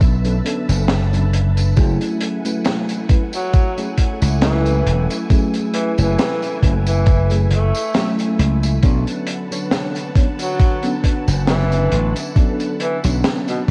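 Nostalgic and hazy, this slow 68 BPM vaporwave fragment in F# minor drifts over Bm7 and F#m9 with a thumpy, up-front electronic kick, a dark, crunchy breakbeat kit of hi-hat, high-tuned snare and tambourine, punchy bright slap bass, a round FM electric piano coloured by phaser, chorus and diffuse delay, and silky string-machine chords, while a warm tenor saxophone with vibrato, tape echo and 12-bit grit enters at 3.3 seconds, all soaked in hall reverb and cassette tape.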